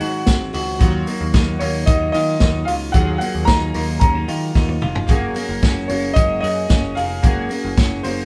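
This jangly indie pop excerpt opens with the full band playing together in one room at 112 BPM in a straight 4/4, its Eb dorian tonality giving a bittersweet, wistful cast. A clear, woody upright piano carries the melody in a high register, its slightly out-of-tune character adding to the nostalgic feel. Beneath it, an electric guitar through a small old amp picks twangy, slightly broken-up arpeggios, while a picked twelve-string acoustic sits very quietly in the mix with a shimmering, octave-doubled sparkle. A chorused retro synth in the background adds glossy, evolving pulse-wave and sawtooth tones with filter sweeps, and a picked electric bass gives the low end a punchy, warm weight. The up-front vintage kit has a medium-tuned snare and a rolled-off top, and it plays a drum fill from 4.6 to 5.1 seconds just before the harmony moves from Ebmadd9 to Gbadd9, all within a moderate studio ambience.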